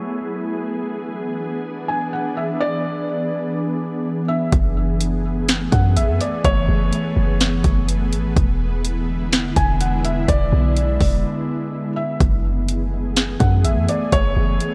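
A moderate concert-hall reverb surrounds this spacious, ethereal slice of atmospheric cloud-rap in F# minor, taken from a longer piece and moving at 125 BPM with a half-time feel. From the start, a felt-muted upright piano carries a soft, intimate melody with audible action noise, filtered and touched with delay, over an airy, detuned pad whose slow-attack chords shimmer with ensemble chorus and pump gently against the beat as the harmony moves between F#m11 and E7. At 4.5 seconds a deep, boomy 808-style bass and an overdriven R&B kit with a soft kick, sharp snare and warm hats arrive, briefly breaking from 11.2 to 12.2 seconds before the closing return to F#m11.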